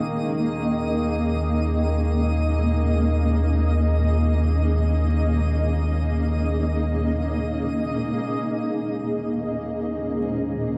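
Reflective and melancholic, this ambient excerpt rests on a blurred, detuned granular cloud pad holding sustained chords up front, over a deep, round sub bass and a nasal, chorused analog drone in the background. A barely audible kalimba adds woody, ringing arpeggios, and a twinkling granular texture with an octave-up shimmer sparkles above until 8.2 s, when the harmony shifts to an Eb7 chord that omits the third. The echo-heavy mix carries a cassette-tape character and a moderate plate reverb.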